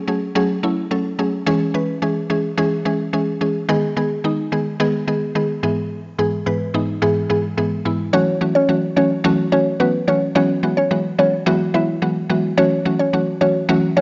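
A straight 4/4 pulse at 108 BPM drives this bittersweet pop fragment in F# dorian, where a bright, woody mallet-like synth pluck with chorus and cassette-tape grit carries the chords up front through a moderate lush hall reverb, and at 8.1 seconds a second, mellower mallet pluck with chorus and phaser joins it to take the melody, all captured on a home cassette recording.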